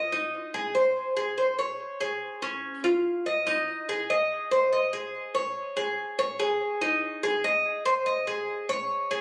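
Sultry and nostalgic, this short Latin fragment is cut from a longer piece and runs about 9.2 seconds in a straight 4/4. A lone Cuban tres carries everything, its acoustic, picked double strings sounding mellow yet metallic, with some strings doubled at the octave. The instrument sits up front, moving between Db4 and Eb5, and a touch of tape echo trails its notes. Around 3.5 seconds the music moves into a new section. Captured on a phone in the room, the sound carries a moderate, club-like reverb that gives it a casual, late-night intimacy.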